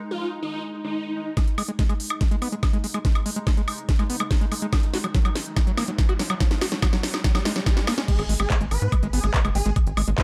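A squelchy, screaming distorted acid line drives this intense psychedelic trance excerpt at 143 BPM, pumping against the sidechain as it rides over an overdriven, knocking electronic kick and a techno kit of cracking snare, smooth hats, handclaps, woodblock and crash cymbal. A pulsing gated texture of detuned triangle chords sits in the background with a filter sweep through the build-up, while a riser enters at 3.7 seconds and a drum fill pushes toward the drop. At 8.1 seconds the swarming, detuned rave lead returns with chorus, phaser and delay, joined by a tight, punchy sequencer bass up front over a G#5 chord in a dry mix.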